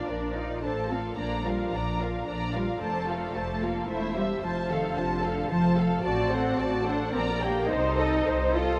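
Dramatic and stormy, this short cut from a quick classical-period movement for string orchestra moves at 110 BPM in 3/4 with a rubato feel, its harmony passing from Bb through F and a D7/A toward Gm/Bb and Adim/C. Muted violin sections carry the melody and a second line, with the veiled violas in accompaniment, while a cello section with vibrato and a distant, lush double bass section, entering at 0.1 seconds, share the bass. All five sections play con sordino with a dark tone, and a huge, wet ambient reverb with an 8.2-second decay places them in a vast, echoing space.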